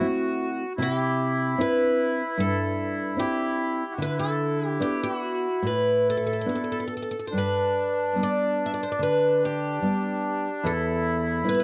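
A picked twelve-string acoustic guitar carries the melody up front, its fresh strings giving a shimmering, octave-doubled ring with a slightly boxy edge and a gentle swing. This short excerpt from a longer fado-style ballad feels mournful and longing, moving with uneven, rubato beats that let each phrase breathe. Beneath it, a reedy accordion with slow beating and a vintage, band-limited tone holds a second line in a narrow middle register. A fingerpicked nylon-string guitar supplies classical-style accompaniment, reaching from low bass notes up into the melody's range. The harmony drifts from A minor through Cadd9 and D6 to G before settling on E minor, all set in a dark, warm production with a moderate booth ambience.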